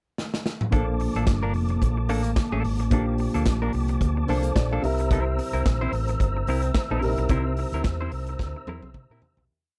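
A drum fill at 0.2 s opens this glamorous, joyful disco piece at 109 BPM with swung sixteenths, before an up-front studio kit settles into a four-on-the-floor beat, with punchy kick, medium-tuned snare and open hats on the off-beats in a pumping room. An overdriven, amped fingered bass drives a syncopated line with chromatic approach notes, while a compressed hollow-body electric guitar chops sixteenth-note figures through harmonic tremolo. A baby grand holds spread, long-sustaining chords with grace notes and a short fill at 4.0 s, and a soft, flute-like tonewheel organ with key click, chorus vibrato and fast rotary speaker pads over the move from Bbmaj7 to C7, until a fade-out that begins at 7.3 s.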